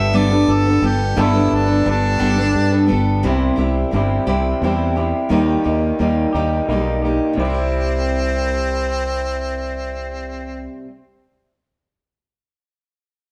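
Harmonica with a light vibrato, bright picked steel-string acoustic guitar, a dark, slightly broken-up riff on electric guitar through a small old amp and a growly, punchy fingered electric bass open this nostalgic folk and heartland rock fragment in 6/8, played live by the band in a stone room with a wet reverb, as the harmonica falls silent at 2.9 seconds and returns at 7.4 seconds while the chords move from Gadd9 through C and Eb back to C.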